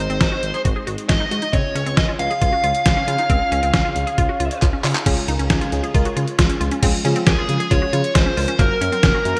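Nocturnal and driving, this short synth-pop excerpt runs at 136 BPM in a straight 4/4, built on chords of Ab and Db before turning to Gb near the end. Up front, a dark, overdriven electric lead guitar carries the picked melody through 4.6 seconds, drops out, and returns at 7.3 seconds, its tone trailed by delay. A detuned 8-bit drum machine drives the groove with a thumpy kick, medium-tuned snare, handclaps, hi-hat and crash, all soaked in gated reverb with a tape-warm, sampler-style character, and a drum fill lands at 4.6 seconds. Beneath it, a smooth, nasal synth bass with vibrato holds the low end, while a juicy, squelchy pluck with a resonant filter sweep spins arpeggios through chorus and delay. A vintage, organ-like ensemble string pad sits in the background with soft sustained chords until 6.8 seconds, and from 5.1 seconds a dreamy FM electric piano with a soft pad layer adds mellow, decaying accompaniment through chorus and phaser. 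The bright 1980s-style digital production places it all in a lush hall reverb.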